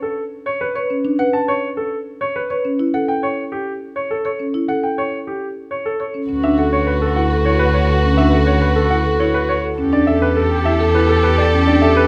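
Close, detailed microphones and a light reverb give this hypnotic, meditative piece of minimalist classical pattern music an intimate presence, and it sounds cut from a longer work. In a straight three-beat metre, a clear grand piano sits up front carrying the melody from the very start, and a woody, round-toned marimba played with soft mallets joins at 0.8 s with arpeggios. The opening harmony moves from Bm7 to A7. At 6.3 s the texture blooms as a chamber violin section enters with sustained, bowed chords full of expressive vibrato. A distant, mellow oboe adds a quiet second line in the background, while a single bowed double bass, rich and up front, anchors the bass with vibrato and portamento. These later bars settle on D69 before shifting to A9sus4/E.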